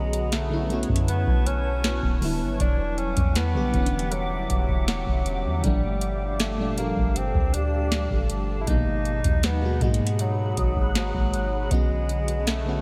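A booming analog drum machine sits up front in a straight 4/4 groove, its deep kick, tonal snare and metallic hats carrying a tape-warm, electronic character, while a soft 808-style bass adds round, dark, sine-like depth underneath. This cut from a longer contemporary R&B piece feels sensual and full of longing, drifting through Bm9, Em9, Gm9 and G#m9 chords. A lush, dreamy FM electric piano layered with a soft pad plays the accompaniment, treated with chorus and phaser. Above it, a granular cloud pad holds blurred, evolving sustained chords with slow attack, long release and its own reverb and analog chorus. The melody comes from a solo bassoon, distant and roomy with classical-style vibrato, set in a diffuse ambient delay. A delicate, bell-like large celesta rings softly in the background, appearing briefly around 1.1 seconds and again near 10.6 seconds, all of it within a light reverb and digital ambience.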